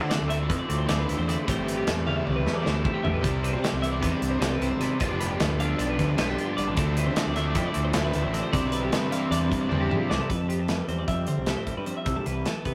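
A fuzzy, overdriven fingered bass sits up front in this wistful, intricate math rock and midwest emo passage in 9/8, joined by a punchy acoustic drum kit with a rolled-off top and fills, a double-tracked overdriven electric guitar riff that drops out at 10.3 s, and two bright, twangy, clean twelve-string electric guitars with spring reverb, one playing accompaniment and the other picking arpeggios in the background, as ninth and seventh chords carry the rough rehearsal-room recording into a brief closing section.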